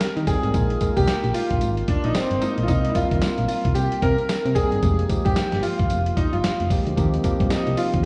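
Drenched in lush hall reverb and dreamy studio ambience, this upbeat, flirty new jack swing R&B excerpt rides a gritty, compressed sampler-style drum kit of hi-hat, thumpy kick, snare and tambourine, a punchy, round FM bass that enters at 0.2 seconds, and a clean tine electric piano accompanying chords such as Eb69, Cm7 and Fm11, while an up-front, brilliant concert grand piano carries the melody through subtle chorus and analog delay.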